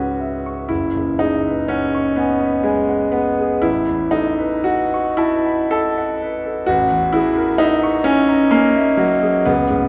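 The recording places a clear grand piano in a wet concert hall, heard from further back in the room, with a long reverb tail that lends the whole short excerpt a hazy, dreamy glow. This is impressionist classical music for solo piano, unfolding in 6/8 with a free, rubato feel. The piano itself sounds natural and intimate, its action noise audible beneath the notes, and it spans a broad register from F#1 up to C#6. The harmony drifts through colorful, unresolved chords, opening on C#m7, moving to F#sus24 at 0.7 seconds, settling on A69 at 3.6 seconds and closing on a shimmering Amaj7#11. Cut from a longer piece, the fragment lasts just under ten seconds and feels suspended, as if caught in mid-reverie.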